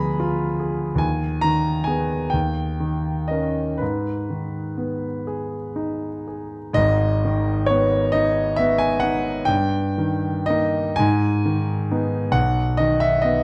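Romantic classical nocturne for solo piano in G# minor, wistful and mournful, moving in a slow, rubato 12/8 at roughly 38-49 BPM. The concert grand sits up front with a natural tone and deep bass, spanning G#1 to B5 in a dark production. Its diminished and dominant harmonies settle onto G# minor before turning toward B at 12.4 seconds. All of this is framed by moderate recital-hall reverb in this 13.4-second passage cut from a longer piece.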